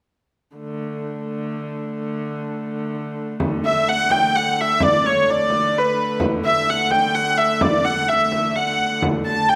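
Festive and rustic, this short medieval dance in a straight 3/4 opens with a nasal, boxy hurdy-gurdy drone, joined at 3.4 seconds by a warm, band-limited frame drum and at 3.7 seconds by a reedy, airy-bowed hurdy-gurdy melody that sits louder in the mix, all carried by the generous reverb of a recital hall.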